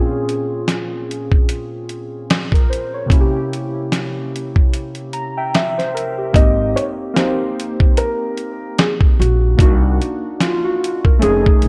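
A gritty, compressed sampler-style drum kit with a thumpy kick sits up front in this dreamy, nostalgic lo-fi hip hop excerpt, swinging under warbling, detuned synth keys that carry a cassette-tape haze, chorus and a filter sweep before they play a fill during a short break at 4.7 seconds. A dark, intimate felt-muted upright piano with audible action noise drifts in with the melody at 5.5 seconds through a diffuse ambient delay, and a woody pizzicato upright bass enters at 6.3 seconds, all within a small, lightly reverberant room.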